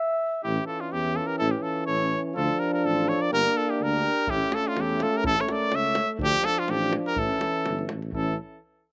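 Dry and open-air, this restless, virtuosic stretch of Balkan brass band music in a swung 2/4 opens with a dark, distant flugelhorn second line heard alone until a clear, soft-attacked trumpet takes the melody up front at 0.4 seconds, over mellow euphonium and lightly vibrato-touched euphonium accompaniment and a close-miked tuba bass, with a tight davul entering at 4.3 seconds and slapback echo on the flugelhorn, both euphoniums and the davul.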